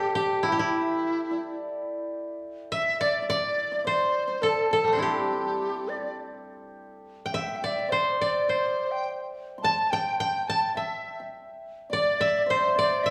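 A reverberant recital-hall sound, with the small-room ambience of a church or concert hall, surrounds this festive, pastoral piece of Chinese traditional chamber music in C gong mode, a brief cut from a longer work moving at a straight 105 BPM in 4/4. An up-front, woody koto played with fingerpicks carries the melody throughout the 13.1 seconds. A bamboo large dizi with a buzzing membrane, pure and expressive with vibrato and a soft attack, plays alongside a bright, shimmering, ringing hammered dulcimer from the start, the two sharing second lines that support it.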